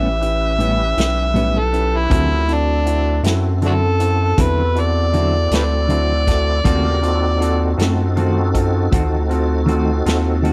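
A dry, close 1970s-style studio sound frames this gritty, soulful slow blues excerpt at 53 BPM in 12/8, where an amplified, overdriven harmonica leads up front with scooped notes and tongue slaps until 7.8 seconds, over a round, deep analog bass, a clean, compressed electric guitar with tremolo, a woody upright piano that adds a brief fill at 10.1 seconds, a slow-rotary tonewheel organ holding full chords in the background, and a punchy acoustic drum kit that enters at 0.2 seconds.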